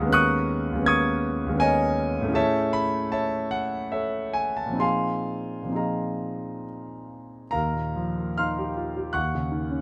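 A warm concert grand piano with deep bass and an up-front presence plays alone through this dreamy, luminous fragment of impressionist classical music, drifting in a rubato 3/4 at roughly 62-83 BPM across rich harmonies from Abm11/Eb through Amaj7 and Bb9sus4, then shifting at 7.5 seconds to Ebadd9 and Ebm7, all in a light reverb.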